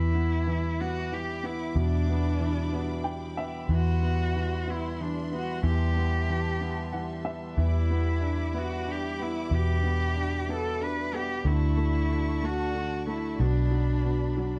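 A slow, straight 6/8 pulse at 62 BPM, counted in dotted quarters, gives this melancholic pop fragment an aching, unhurried sway. A single bowed cello carries the melody, rich and smooth with an even vibrato. Beneath it, a woody, slightly detuned upright piano accompanies with a vintage character, slipping in brief fills at 2.7 and 6.6 seconds. A lush studio string section holds sustained chords with a smooth top, while a round, foam-muted fingered electric bass sits up front, dark and amped. The harmony drifts from Em7 through Cmaj7/E and back to Em7 before closing on Dmaj7 and Bm7. All of it sits in a small room with a dark, warm production.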